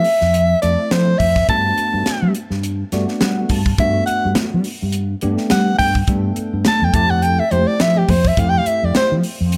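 Set in light reverb, this soaring, funky electric jazz fusion excerpt at 104 BPM in a swung 4/4 features an up-front, breathy soprano saxophone soloing with vibrato and slapback echo over a bell-like tine electric piano with ensemble chorus, which adds a fill at 2.6 seconds, along with a crisp, polished drum kit with high-tuned snare and punchy kick, a round fretless bass with analog chorus entering at 0.2 seconds, and soft-handed congas joining in the background at 3.8 seconds, as the chords move from Fmaj7 through Gmaj9 to Fmaj9.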